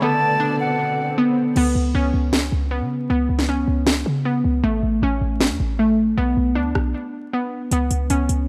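A glassy wavetable pluck carries this brooding, eerie trap excerpt from start to finish, its crystalline, full-bodied arpeggios sitting up front with chorus, delay and an evolving filter sweep. The half-time opening sets an airy, reedy concert flute with a straight tone and delay beside a ringing, fingerpicked Celtic harp under a low-pass filter. A dark symphonic string section adds lush, bowed chords with vibrato from far in the background, and a very quiet electronic swell rises just before the beat arrives. At 1.6 seconds a punchy, tight 808-style bass with a noise layer enters alongside an overdriven trap kit with a sharp snare, rim clicks, crash and metallic hi-hats. The hi-hats stay muted until 7.7 seconds, and a break at 6.9 seconds opens a short gap before the Bsus2/C# chord returns. Light digital reverb and vinyl crackle lend the sound a dusty, haunted edge.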